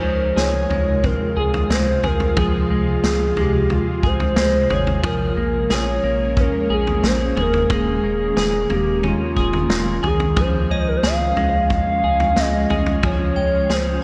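Dream pop with a blissful, floating mood, built on a hollow, woody clarinet-like synth lead with vibrato, chorus and digital delay carrying the melody over an ethereal, warbling pad of sustained chords and a clean semi-hollow electric guitar picking arpeggios through analog chorus and delay. Underneath sits a thick, saturated sub bass, while a punchy vintage drum kit of kick, snare and toms with gated reverb sits up front, and a faint, crystalline FM bell enters at 10.7 seconds. The chords move from Dbmaj7 through Bbm7 and Eb7sus4 and back, all bathed in a lush hall reverb with bright 1980s-style digital production, in a short cut from a longer piece.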